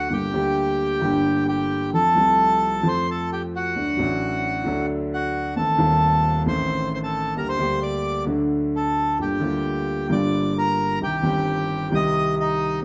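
A reedy, airy bandoneon carries a passionate, dramatic tango melody from the first moment, with a dark concert grand piano accompanying close up front, its deep bass, boxy body and long sustain sounding beneath. The rubato feel lets the music stretch freely as the harmony moves from Gm through F, D and Adim before settling on Gm7 and a closing Cm. A moist studio reverb frames the pair in this brief 12.8-second cut from a longer piece.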